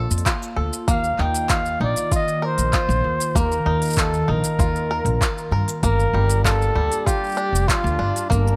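This short folktronica excerpt at 97 BPM in straight 4/4 opens with a warbling, lo-fi pad holding dark, detuned sustained chords with a slow attack and long release, colored by chorus and its own reverb. A bright, twangy banjo picks arpeggios with fingerpicks alongside it, while a woody, growly upright bass plucked pizzicato sits up front with tube saturation. Within the first few tenths of a second, a crisp, overdriven electronic kit of handclaps, hi-hat and shaker joins with a soft, overdriven electronic kick. At 0.9 seconds a breathy flugelhorn takes the solo melody, mellow and intimate with vibrato, scooped notes and a touch of delay. The harmony moves from a rootless Gm7 to Ebsus2 before returning to Gm7 at 5.8 seconds, and a small room's light reverb gives the playful, hopeful mood a nostalgic glow.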